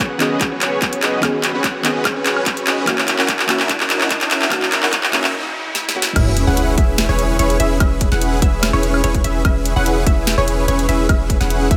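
A huge, thick supersaw riff sits up front with sidechain pumping, low-pass filtering and digital delay, over a deep, mellow sine 808 bass, a hard-clipped electronic kick and a trap kit of sharp snare, bright hats, handclaps, woodblock and crash, all in a moderate digital room reverb, in this euphoric, playful future bass excerpt at 146 BPM in a half-time feel in E lydian. A soft, round chorused pluck carries the accompaniment through the build-up, with drum fills, a background riser and noise sweep, and a short break before the drop lands at 6.2 seconds with an impact. From there a lush, punchy unison pluck adds background arpeggios with a moving notch while the chords settle from B69 and F#7 onto E6.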